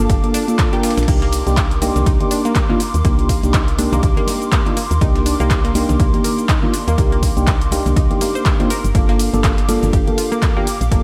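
A punchy, overdriven electronic kick sits up front from 0.1 s in this late-night, hypnotic deep house excerpt with a swung sixteenth-note feel. Around it, a layered, overdriven deep house kit adds crash, handclaps, hi-hat, ride and shaker, while a very quiet, gritty sampler-style kit tucks in a medium-tuned snare and extra hi-hat. A woody, round FM bass with a dark, decaying tone anchors the harmony as it moves from Gm7 to a long stretch of Cm9 and back to Gm7 at 8.7 s. A mellow FM electric piano plays soft, full-bodied stabs colored by chorus, phaser and analog delay. Above it, a breathy, detuned pad holds sustained chords with a slow attack, and a bright analog pluck spins arpeggios through a diffuse ambient delay, all three pumping with the sidechain. Ringing, close and dry congas enter at 1.8 s in the background, and the whole mix is soaked in a lush hall reverb that gives it a dreamy glow.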